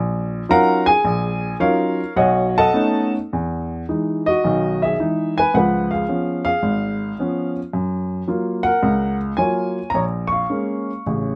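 Closely miked and lightly reverberant, this brief solo jazz passage places a woody, intimate upright piano up front, its natural tone carrying audible action noise. The cool, late-night mood comes through a swung, rubato feel as the piano spans from Ab1 to Db6, moving from Ebm9 and B9 into a second passage at 3.3 seconds built on Emaj7, Db7, Gbmaj7 and Bbm7. The clip ends at 11.4 seconds, cut from a longer piece.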